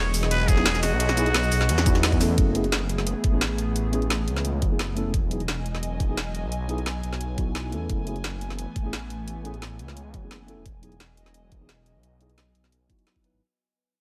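A melancholic, dreamy stretch of liquid drum and bass, cut from a longer piece, opens on a drop where a nasal, raspy trumpet with straight mute sings a brief jazz-style melody with scooped notes through digital delay, over a menacing detuned saw bass with a filter swell and an airy, breathy pad that pumps under chorus. An up-front, overdriven kit with a woody snare and bright hats comes in at 0.1 seconds, and a knocking electronic kick joins at 0.5 seconds. A mellow tine electric piano with tape echo follows, as the harmony alternates between Emaj9 and F#m11 through a long fade-out from 2.4 seconds, all set in digital ambience.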